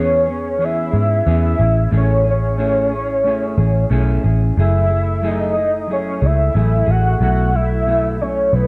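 Indie pop with a hazy bedroom-pop glow, this laid-back excerpt moves in a straight 4/4 feel through E6, Amaj7, F#m9 and B7sus4. A soft, octave-layered synth lead carries the melody up front, its full, rounded tone colored by tremolo, ensemble chorus and tape echo, while a mellow, clean electric guitar accompanies underneath with lush chorus and a warbly pitch drift. A vintage foam-muted picked electric bass sits forward with a dark, amped weight, and the mix is dry, with little reverb.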